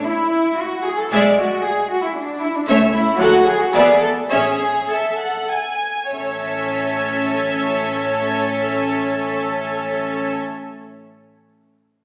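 In a rubato 3/4 that moves between 96 and 116 BPM and slows from 1.9 to 6.1 seconds, this lively, cheerful classical-period string orchestra excerpt in A major opens with a dark, up-front cello section alone before, at 1.1 seconds, a floating violin melody, a smooth-topped second violin line, pure viola accompaniment and a soft, intimate double bass join, all bowed sul tasto in a reverberant hall with a small-speaker sound.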